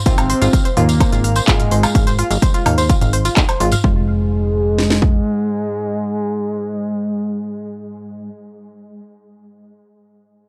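Melodic techno, driving and cinematic, cut from a longer piece and opening on a drop before the harmony shifts at 3.8 seconds. An overdriven electronic kit hits hard with a heavy kick and cracking snare, joined by smooth hi-hats, handclaps, toms and woodblock plus a jingly acoustic tambourine, while a punchy, funky sawtooth bass pumps beneath. A woody, wave-folded pluck spins chorused, sidechain-pumped arpeggios through analog delay until 4.1 seconds, and a fat, detuned lead carries the up-front melody with phaser, vibrato and tape echo through 8.3 seconds, the dry, gritty mix tinged with transformer saturation.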